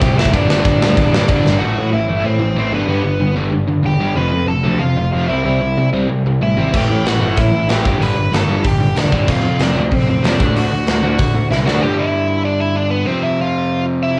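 An up-front acoustic metal kit with a tight kick and a rolled-off top drives this upbeat, rebellious punk rock fragment, dropping out at 1.5 seconds and returning at 6.7 seconds within a half-time stretch. A growly, fuzz-laden electric bass and a dark overdriven riff guitar carry the low end, while a bright, compressed overdriven guitar plays the melody in the background. A very quiet distorted riff guitar and a brief, double-tracked, scooped high-gain guitar add texture, and the bass and distorted guitar stop at 11.8 seconds. The band plays live in one large reverberant room, captured on cassette tape.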